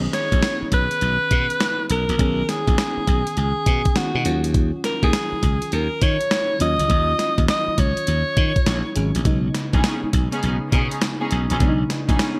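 R&B in a new jack swing style at 102 BPM with a swung sixteenth feel, this confident, punchy excerpt sets a growly, up-front slap bass and a thumpy sampler-style drum machine under a round, warbling FM electric piano with chorus, while a forceful alto saxophone with vibrato, scooped notes and delay carries the melody until 9.0 s, before a bowed, reedy string section adds stabs from 9.7 s, all in a bright 1980s-style digital production with light reverb.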